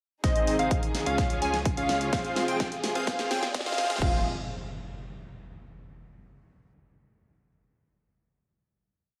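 An anthemic, euphoric piece of festival progressive house in F minor, moving at 127 BPM in a straight 4/4, built as a short build-up that gives way at 4.0 seconds to a final chord ringing out to 5.9 seconds. A punchy, up-front electronic kick drives four-on-the-floor beneath a big-room kit of closed and half-open hats, a huge snare and crash, with a drum fill running through the build. A dense, compressed supersaw carries a dotted-rhythm riff in close voicing, its low-pass filter sweeping across the build while sidechain pumping and delay give it motion. A catchy, plucky square-wave lead doubles those chords in unison with arpeggios, with vibrato, a moving notch and its own delay, while a detuned saw bass with chorus sits in the background following the chord rhythm. Veiled, con sordino strings hold a sustained pad underneath over the chords Ab, Db and Fm, and a riser and impact arrive at 2.7 seconds to mark the transition, all set in a lush hall reverb.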